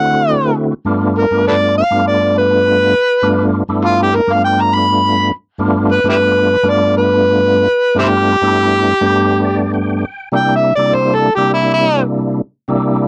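An overdriven, amplified harmonica takes a gritty, jazz-style solo with tongue slaps, scooped notes and light vibrato over a fat, percussive tonewheel organ turning through a slow rotary speaker and chorus vibrato, which adds a fill at 9.1 seconds in this laid-back swung blues cut from a longer piece, recorded close and dry with light reverb in a 1970s-style studio.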